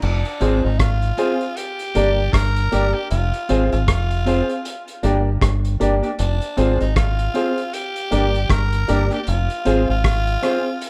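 A slow 78 BPM roots reggae groove in F dorian, swung on the 16ths and alternating Fm and Gm, carries a meditative, serious mood through this short cut from a longer piece, with a cloth-damped, muffled drum kit of tight kick, rim click, hi-hat and dark crash cymbal underpinning a round, up-front dub fingered electric bass, while a dark, clean electric guitar with spring reverb and tape echo sits in the background from 0.4 seconds, a woody upright piano adds intimate stabs with audible action noise, and a breathy, raspy tenor saxophone with vibrato and tape echo leads the melody, all in a small room with a rough home-demo feel.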